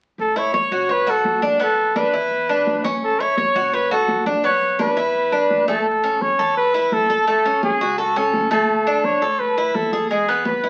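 A straight 4/4 pulse at 169 BPM drives this sunny, danceable Cuban son and guajira in A major, where a warm, close-miked trumpet with vibrato and scooped notes carries the melody up front beside the bright, metallic double strings of a picked Cuban tres playing arpeggios, while high-tuned, thick-skinned congas under soft hands and a woody, thumpy gut-string upright bass in the background fill out the groove, all heard through wet studio reverb and the crackle of a very old 78 rpm record.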